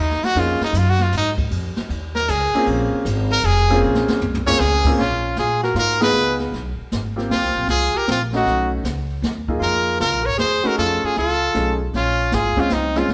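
A swinging waltz lilt drives this smoky small-group jazz cut, taken from a longer piece and rooted in a pizzicato upright bass with a woody, growly tone set up front. A brushed drum kit with dark cymbals and a boomy kick keeps the time, while a warm baby grand piano comps through rich extended chords. A brilliant, punchy trumpet leads from the start, its forceful lines shaded with light vibrato and scooped notes, and a drum fill at 3.8 seconds ushers in the second section. At 5.0 seconds a breathy alto saxophone joins with a soft attack and scooped, vibrato-tinged phrases as a second voice, and the band hits an accent at 5.9 seconds. The group sounds as if it is playing live together in a stone room with a moderate reverb, giving the whole a natural feel.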